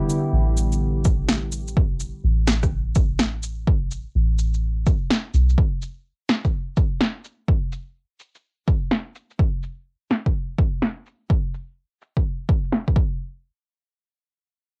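A punchy, overdriven electronic kick drum sits up front in this melancholic, nocturnal future garage excerpt, entering at 1.1 seconds and carrying on nearly to the end with a cassette-tape grit. Alongside it, a layered kit of electronic shaker, fat snare and rim click runs from the opening moments with the same overdriven, tape-worn edge, its snare and percussion dulled by low-pass filtering, while a filter sweep shapes the drums across most of the clip. The 16th-note groove swings, giving the beat a loose, shuffling lilt. A warbling, detuned pad of sawtooth and triangle tones holds a dark Em7 chord with chorus and its own reverb, nostalgic and vintage in colour, but it drops away by 1.7 seconds. Beneath it, a soft, round 808-style bass with a sine-like body and a quick attack decays into deep, dark low notes, pumping with sidechain compression until it drops out at 5.6 seconds, after which the harmony falls away entirely. 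The sound is dry and close, with the hazy, home-taped character of a cassette recording.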